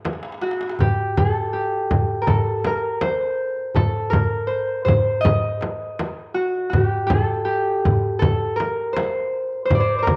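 A straight, unhurried 4/4 pulse opens this soulful, longing cut from a Turkish makam ensemble piece, beginning with a short drum fill between 0.1 and 0.8 seconds. A crisp, metal-shelled darbuka sits distant, as if heard across a large room, while a frame drum played with soft hands stays close and up front. From 0.4 seconds the concert harp carries the melody in a middle register, fingerpicked and ringing, its warm tone colored by cassette tape. The harp sits up front alongside the frame drum. A moderate spring reverb and small-room ambience frame this homespun cassette recording, which feels like an intimate glimpse of a longer performance.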